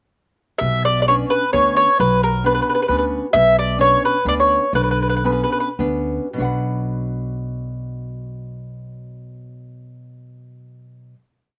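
Wistful and passionate, this short Italian folk serenade in B minor moves in 3/4 at a tempo between 97 and 134 BPM, slowing down as it nears its close. An up-front mandolin carries the melody with round, double-strung picked notes, shaping a motif-based tune in period phrases touched by a slapback echo, until it drops out at 5.7 seconds. Beneath it, a bright classical nylon-string guitar fingerpicks an oompah accompaniment of bass notes and chord figures. A woody, growly pizzicato upright bass sits on root and fifth on the main beats. The piece opens on a Bmadd9 chord and settles onto a plain Bm final chord at 6.4 seconds, which the guitar and bass sustain until 11.2 seconds, in a dry outdoor recording with a softened top end.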